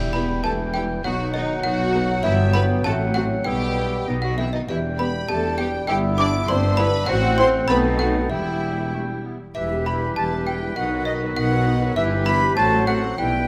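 Mischievous and quirky, this cinematic piece in 2/4 sets a dry, woody trough xylophone on the melody beside a softly voiced violin section, while clarinet, clear oboe, airy silver flute and a lush violin section weave second lines over mellow bassoon, viola section and punchy French horns, all grounded by a distant cello section, dark tuba and focused double basses in light reverb.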